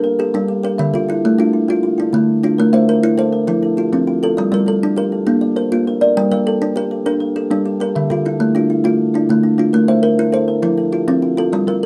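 Hypnotic and trance-like, this short cut from a longer southern African traditional piece moves in 12/8 with a straight feel. Two kalimbas play arpeggios together from the first second to the last, both sitting up front in a modest small room. The first, a hollow-box instrument, gives short, woody thumb plucks. The second, a solid-board kalimba, reaches a little higher and offers darker, smoother tones that keep ringing. Beneath them the harmony cycles through minor chords and brief lifts to F and Bb, repeating its pattern roughly every six seconds to deepen the spell.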